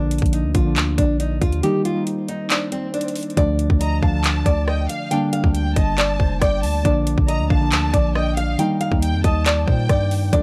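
Up-front trap drums with a hard-clipped kick, metallic hats, handclaps and rim clicks drive this brooding, hard-hitting half-time hip hop excerpt at 138 BPM, where a fingerpicked nylon-string guitar melody with delay rides over muted, felt-like synth keys with chorus and a deep, mellow sine 808 bass, while a background electronic swell appears at 2.0 seconds, a lush, distant bowed violin section with vibrato adds a second line from 3.8 seconds, and a smooth, detuned analog pad surfaces only at 10.3 seconds, all within a dark, warm production.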